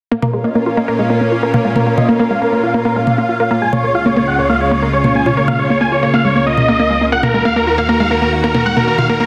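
Uplifting trance at 137 BPM in Bb minor, this short, driving and soaring excerpt moves from Bbm to Db at 3.6 seconds and Ebm at 7.1 seconds. A huge, euphoric supersaw lead carries the melody up front, its detuned sawtooth roughened by vintage 12-bit sampler grit and shaped by a low-pass filter sweep and delay, while a lush, thick unison pad holds bright sustained chords with chorus. A round analog pluck runs arpeggios through chorus, phaser, delay and its own filter sweep, and layered electronic toms with overdrive push underneath, all set in a moderate digital room and a dense, heavily limited modern master.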